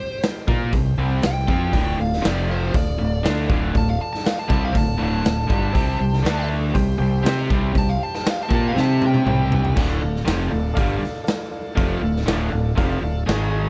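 Brooding and driving, this classic rock passage in D minor moves at 120 BPM in a straight 4/4, cut from a longer piece, with a biting, overdriven lead guitar carrying a solo with slapback echo until 9.8 seconds, where a drum fill from 8.8 seconds hands off to the next section. Beneath it, a distorted rhythm guitar sits in the background beside a second picked, overdriven guitar that also plays a riff, while a growling fingered bass, overdriven, punchy and up front, pairs with a raw garage drum kit whose punchy kick and pumping stone-room sound feel saturated and close. A very quiet tonewheel organ adds shouting, key-clicked chords through a slow rotary speaker, and from 1.7 seconds a reedy electric piano with harmonic tremolo fills in behind, all in a dry room.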